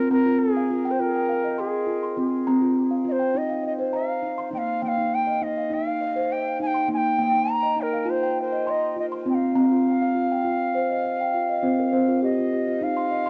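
Gentle and calm, this meditative world excerpt moves at 102 BPM in a straight 4/4, with a steel tongue drum struck with rubber mallets rolling out round, pure, ringing arpeggios over an Fm, Eb and F5 progression. Up front alongside it, a bamboo bansuri carries the melody with a breathy, bright straight tone and crisp attack, colored by plate reverb and tape echo. Both parts have a cassette tape character in a wet booth ambience with a home-recorded feel, and the tongue drum plays a fill from 10.7 to 12.8 seconds.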